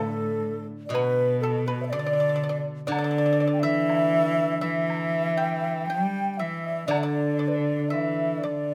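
Pastoral and graceful, this unhurried, rubato fragment of Chinese traditional chamber music sets an up-front bowed cello, warm with vibrato and gliding portamento, beneath two end-blown bamboo xiaos, one airy and mellow carrying the melody and one breathy adding a second line in the background, while a dry, percussive pipa and a ringing, silvery steel-string zither fill in, a background woodblock enters at 0.9 seconds, and the recording has light reverb with close, detailed miking.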